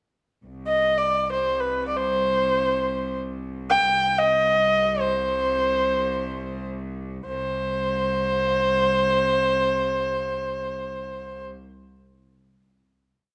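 A warm, up-front kamancheh, played by one bowed player with light vibrato and portamento, sings a smooth, ornamented modal melody in C avaz esfahan between B4 and G5 over a clear, bowed cello-section drone on C2, in free time with a soulful, melancholic mood, tuned to A4 = 444 Hz, set in a moderate recital-hall reverb, and settling onto a final note held from 7.3 to 10.7 seconds.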